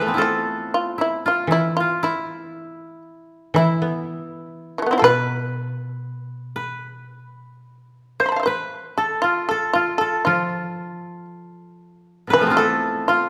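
In a free, rubato 2/4 pulse hovering around 54-62 BPM, this austere, solitary piece of traditional Japanese chamber music sets a buzzing, percussive plectrum-plucked shamisen melody over a woody, dry fingerpicked koto second line, joined at 1.5 seconds by a mellow low koto accompaniment, all three close and present within a moderate recital hall reverb.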